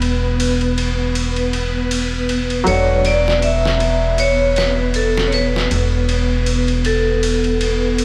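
A swung, sampler-style trip hop beat of gritty, pitched-down snare and filtered ride cymbal in a small room sets a smoky, hypnotic mood, as a woody pizzicato upright bass sits up front with tube saturation, a vintage upright piano with harmonic tremolo and tape echo and a mellow sawtooth string machine of cellos with ensemble chorus hold Em7 to D/E, and a bright, ringing hard-mallet vibraphone with fast motor vibrato, 12-bit grit and tape echo carries the melody from 2.7 seconds in this cut from a longer piece.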